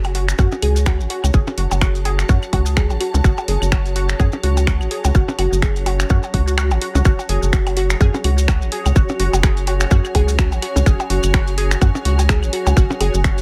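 A digital, echo-heavy ambience surrounds this sparse, quirky minimal techno fragment, cut from a longer piece and set in a swung 4/4. Up front, a tight, layered electronic kick pairs with a rubbery, hollow square-wave bass that bounces with a dark, resonant filter pluck and pumps against the sidechain. A punchy analog drum machine adds finger snaps and hi-hat re-recorded in a small room and soaked in dub echo. Overdriven claves and percussion blips run through analog delay, while close, grainy maracas carry their own dub echo. A juicy, squelchy blip pluck riff, detuned and phased with tape echo, bounces over a cloudy, evolving granular pad that glows with built-in reverb. The kick falls away at 6.6 seconds before the drop lands at 7.1, where the harmony shifts from a minor chord to a bare fifth.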